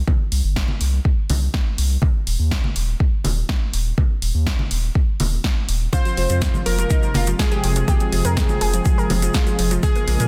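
A straight, steady pulse drives this progressive house excerpt, with a deep, layered electronic kick sitting up front from the first moment and a deep house kit adding a punchy snare and hi-hat just after. Soft-handed congas, bright and saturated, pump in the background against the kick, while a round analog bass built from triangle and sine tones holds the low end, dark and sustained, and breathes with the same sidechain pumping. At 5.9 seconds the harmony opens onto an Fmadd9 chord and the track expands: a smooth, detuned sawtooth pad with slow attack and chorus spreads chords underneath, and an analog pluck of sawtooth and square waves spins arpeggios with a moving notch, a filter sweep, gritty 12-bit sampler texture and tape echo. Meanwhile, a catchy, full-bodied unison lead with a sub octave and fast attack carries the melody through dub echo, while a grainy tube shaker joins quietly at the back. 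Light digital ambience and a dense, heavily limited modern master keep the driving, expansive mood tight and loud.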